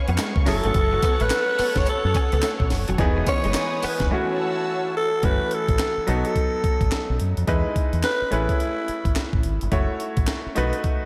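A bright grand piano, an airy detuned unison pad with chorus and phaser, and a clean, direct-recorded electric guitar riff open this confident, punchy new jack swing cut at 107 BPM in F# dorian, soon joined by a thumpy, compressed sampler-style breakbeat kit with a high-tuned snare, a round, dark fingered dub bass, barely audible crisp group handclaps and an up-front growling alto saxophone melody that is breathy and raspy with light vibrato, the piano, guitar and saxophone carrying shimmer reverb and slapback echo inside a big arena-like hall, before a silent gap from 4.1 to 5.2 seconds gives way to a second section moving through B7 and Amaj9.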